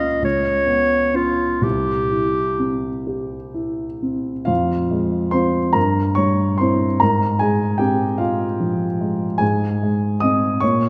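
Elegiac and solemn, this romantic classical duo in F minor drifts in a rubato 6/8 at roughly 41-51 BPM, with a clear, present clarinet singing the melody up front until 3.1 s while a dark, mellow grand piano, intimate and smooth with audible action noise and a vintage character, carries the accompaniment on alone through 10.9 s, the whole fragment bathed in the wet bloom of a concert hall.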